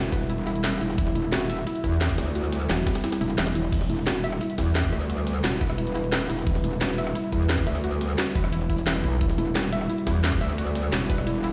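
A straight 4/4 pulse at 175 BPM drives this dark, mechanical technical drum and bass excerpt in E minor: a knocking electronic kick, which drops out from 3.0 to 3.7 seconds, and a layered drum and bass kit of cracking snare, bright hats, rim clicks and crash sit over a gritty, pitched-up breakbeat sampler-style kit in the background, while a distorted metallic wobble bass is joined at 1.0 seconds by a second, overdriven wobble bass up front, a warbly, dusty lo-fi pluck spins chorused arpeggios through dub echo, and a deep, detuned ambient pad holds sidechain-pumped sustained chords, all in a light stone-room reverb.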